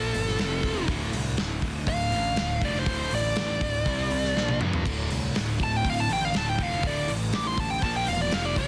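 Hard rock with a menacing, aggressive edge, this short cut is led by an up-front, bluesy lead guitar solo with distortion and analog delay, set over very quiet riffs from an overdriven semi-hollow guitar and a sludgy double-tracked guitar, a bright, scooped high-gain guitar in the background, a dark, round fuzz bass, and a punchy big-room drum kit that breaks into a fill at 4.4 seconds, all in a dry, dense and heavily limited modern mix.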